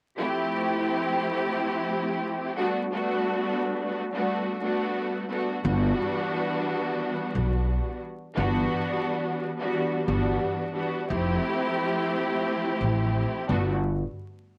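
Boom-bap hip-hop at 88 BPM with a swung sixteenth-note feel and a soulful, warm mood, cut from a longer piece and moving through Fmaj7, Gmaj7 and Em7/G chords. A lush, bowed string section with vibrato carries the accompaniment up front from the start, its focused, close sound shaded by cassette tape and high- and low-pass filtering, before a woody, thumpy pizzicato upright bass on gut strings joins at 5.6 seconds. The booth ambience has a wet tint, and vinyl crackle over a home cassette recording gives the whole a worn texture, leading to a brief break at 13.8 seconds.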